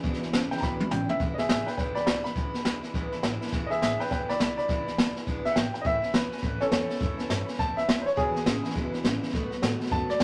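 Rockabilly cut from a longer piece, upbeat and rollicking at 206 BPM with a swung 4/4 feel in E mixolydian, moving from E7 to A7 and on to B7. A clear, intimate upright piano with audible action noise sits up front alongside a jazz brush kit with a boomy kick, which plays a fill from 0.6 to 1.2 s before the piano takes a solo from 1.2 s. Underneath, a woody, thumpy pizzicato upright bass and a bright, full-bodied picked dreadnought acoustic guitar stay in the background, while a twangy, slightly broken-up electric guitar through a small old amp plays a riff at the start and returns at 8.2 s, all in a moderate studio ambience.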